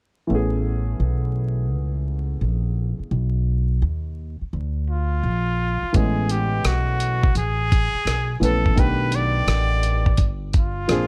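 A nasal, breathy trumpet with a straight mute enters at 4.9 seconds, carrying an intimate, whispered jazz melody with vibrato and a slapback echo. It plays over a worn, slightly detuned upright piano and a woody pizzicato upright bass, both sounding from 0.3 seconds and moving through chords like Amaj9 and B7alt in A major. This smooth, warm jazz-hop excerpt sits at 85 BPM with swung 16ths, and at 5.9 seconds a gritty, compressed sampler-style drum kit joins up front with hi-hat, rim click and a thumpy kick, all in a dry, close sound dusted with vinyl crackle.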